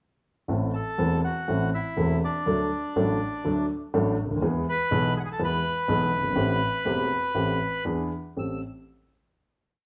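A marcato-in-four tango rhythm from a dark, woody upright piano, its action noise audible, drives this short, sultry and dramatic tango at 122 BPM with a rubato feel in A dorian, while a reedy, bright, close-miked bandoneon sits up front with a motif-based melody in sentence-like phrases, partly doubled in octaves, over chords moving from Am through D and E to a final Am7 held from 8.4 seconds, the two players heard live together in a large studio's reverb.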